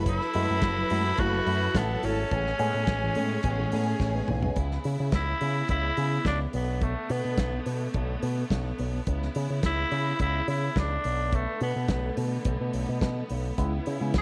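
A straight 4/4 disco groove at 106 BPM in B dorian sets a sultry, danceable mood, carried by a soul drum kit with a tight kick and rolled-off top, topped by a drum fill at 4.0 seconds, and a picked electric bass pushed up front through an envelope filter. A breathy, raspy tenor saxophone takes the melody over clear bowed strings holding sustained chords, while a lush second string line and a barky tine electric piano with phaser share the opening until 4.6 seconds, the piano briefly returning at 13.6 seconds. Chords of F#m7 and Amaj7 give way to alternating C#m7 and Bm7 from 4.6 seconds onward in this short cut from a longer piece, all set in studio reverb.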